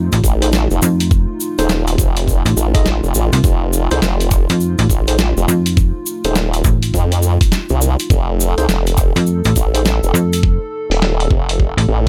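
A detuned, formant-filtered wobble bass sits up front in this swaggering, playful glitch hop passage, riding a swung 16th feel beside a snappy FM slap bass with a metallic attack and a knocking, layered electronic kick. Behind them, a gritty, pitched-down boom bap sampler kit adds hi-hat, rim click and snare, while a grainy, bright cabasa drops out at 10.4 seconds. A moody analog pad holds sustained chords with chorus and sidechain pumping, and a mellow tine electric piano plays background stabs through 12-bit grit and dub echo, all in a dry sound on an F7 chord.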